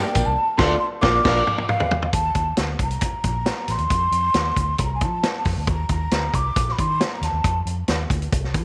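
A straight 4/4 groove at 136 BPM drives this urgent, uptempo 1960s-style soul piece, propelled by a punchy, up-front vintage drum kit with dark cymbals and a medium-tuned snare, joined almost at once by a round, foam-muted fingered electric bass. A breathy, hollow jazz flute with vibrato carries the melody from a distance until 7.7 s. In the opening 1.4 s, a clear baby grand piano with audible action noise and a slightly broken-up, lo-fi electric guitar stabbing through slapback echo sit in the background, while a drum fill and band accent run up to 2.1 s, all within a moderate echo chamber reverb as the chords move from Dm and Bb to Eb5 and F.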